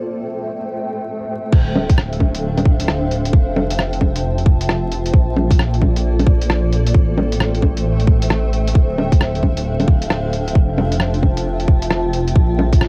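Rainy and nocturnal, this future garage excerpt opens with a blurred, granular cloud pad sustaining chords alone until 1.5 seconds, when a deep, rumbling detuned saw bass with sidechain pumping, a tight, layered electronic kick drum and a muffled, pitched-down sampler-style kit of bongos, crash cymbal, hi-hat and rim click arrive up front on a swung groove, set in light reverb with the lo-fi character of a home cassette recording and vinyl crackle.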